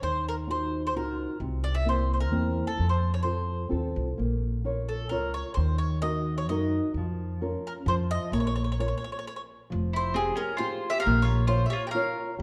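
Italian folk in the manner of a serenade, this romantic, passionate fragment moves at 131 BPM in a straight 3/4, set in Bb harmonic minor and cut from a longer piece. A picked mandolin carries the melody up front from the start, its double strings giving a round, warm tone, while a thumb-plucked nylon-string guitar with fresh strings supplies small, warm accompaniment. Beneath them a woody pizzicato upright bass on steel strings anchors the low end, sitting slightly louder than the other parts. The harmony travels from Ebmadd9 through C7, F and Bbm before a brief stop at 9.2 seconds, after which a new section opens on Fmadd9 and resolves to Bbm. At 9.9 seconds a second mandolin joins with a mellow, softer line beneath the lead. The dark production sits in a moderate recital hall reverb that lends the instruments a gentle sense of space.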